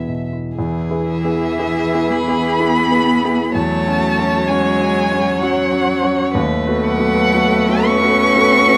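A singing violin melody with vibrato and portamento enters at 1.1 s and floats high over this slow, yearning and elegiac classical movement for piano quintet, in E major and 3/4 at around 55-65 BPM with a rubato feel. A second, equally rich and expressive violin opens the passage beside a warm concert grand piano, whose deep bass carries the accompaniment up front, while a smooth, even viola sits in the background and a close cello with soft attack and portamento adds its own expressive line from 1.1 s. Close, detailed microphones in a recital hall with moderate reverb capture this fragment of a longer piece as the harmony moves from E through F#m7/E to B7/D#.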